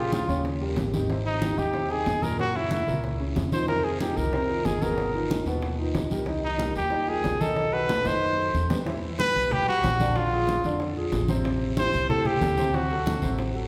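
Fiery and sultry, this Afro-Cuban jazz excerpt at 186 BPM sets a clear, lightly vibrato-tinged trumpet solo up front over an intimate concert grand piano with audible action noise and long sustain, a woody, thumpy pizzicato upright bass, thick-skinned low-tuned congas and round, compressed, saturated bongos in the background, and a raspy, dry guiro, heard in a reverberant recital hall, with a drum fill at 7.9 s leading into E minor at 8.9 s.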